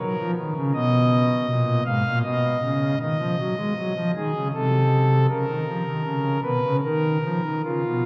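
A thick, up-front pipe organ sound on foundation stops blooms into a cathedral's long, wet reverberation, lending this brief classical fragment a reverent, serene atmosphere. Cut from a longer piece, the chorale-style passage moves in a gentle triple metre with a flexible, rubato feel. The organ plays alone throughout the 8.1 seconds, its romantic voicing spanning from low in the bass to high in the treble. The harmony travels from F# through G#m and a diminished seventh chord before settling on C# and closing on an open D#5 sonority. The rich resonance of the space lingers around each chord, giving the short passage a sense of quiet grandeur.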